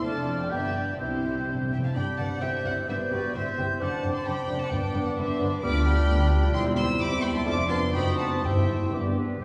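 A lively, cheerful classical-period movement for symphony orchestra opens with nearly the whole ensemble sounding together, set in a wet concert-hall reverb and moving in quick 2/4 at 118-134 BPM with a flexible, rubato feel. A chamber violin section carries the melody, bowed sul tasto with light vibrato and soft attack, while a second violin section, an airy metallic flute, a mellow, distant cor anglais and a smooth-topped clarinet weave supporting lines around it. Beneath them, a dark bassoon and a very quiet, shadowy viola section supply accompaniment, a roomy French horn section holds sustained chords in the background, and intimate cello and double bass sections anchor the bass. Close, dry timpani with medium mallets enter with a fill at 1.0 seconds and return briefly near 4.7 and 8.4 seconds. The harmony starts in G major and turns toward C major from 5.6 seconds, passing through a diminished chord before settling back on G as this fragment of a longer piece ends.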